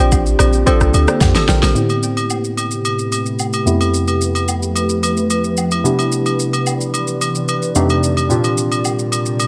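This soulful, hypnotic amapiano piece in A minor, cut from a longer track, moves at 110 BPM in a straight 4/4 and opens on a drop. Up-front analog keys with a mellow, detuned, chorused tone, a soft, wave-folded pluck playing dark stabs with chorus and delay, and a deep, round log drum bass sound together from the start. The pluck and log drum bass drop out by 1.7 seconds, as a drum fill leads into a long filter sweep from 1.8 seconds. A glassy, ethereal FM pad holds sustained chords, shimmering with ensemble chorus, phaser, built-in reverb and sidechain pumping. An electronic deep house kit, overdriven and up front, pairs a punchy kick and fat snare with rim click and shaker, while acoustic woodblock and agogo bells add small-room colour. The harmony drifts through lush extended chords such as Am9, Fmaj9#11, Cmaj9 and F13, all under a light reverb.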